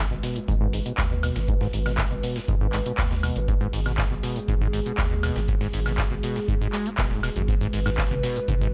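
A squelchy, resonant acid bass riff with chorus and delay opens this trippy, hypnotic acid house excerpt at 120 BPM, with a filter sweep over a deep, round analog bass that pumps to the sidechain, while a lo-fi, detuned tape-like pad soon holds a dark, nostalgic G#m7 chord with its own reverb and pumping. From 0.2 seconds a booming analog drum machine adds handclaps, metallic hi-hats, shaker, toms and woodblock, and a gritty sampler-style kit sits in the background with a fat snare and filtered, pumping hats. A dry, deep electronic kick enters at 0.5 seconds, anchoring a mix that carries little reverb overall.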